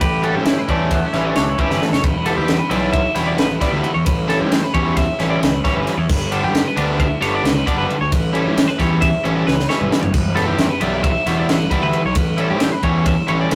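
An up-front, double-tracked overdriven semi-hollow guitar carries the riff from 0.2 s in this wistful, intricate math rock and midwest emo excerpt, moving in 9/8 at 266 BPM in G lydian over chords cycling through G, Em7 and A7. Beneath it, a bright twelve-string electric guitar spins arpeggios through a harmonic tremolo, a fuzz-laden picked electric bass adds low end, and a crisp, airy fusion drum kit with a high-tuned snare and punchy kick plays two fills, while a clean, twangy electric guitar offers accompaniment only until 2.1 s. Moderate studio reverb and warm saturation shape the rough rehearsal-room sound.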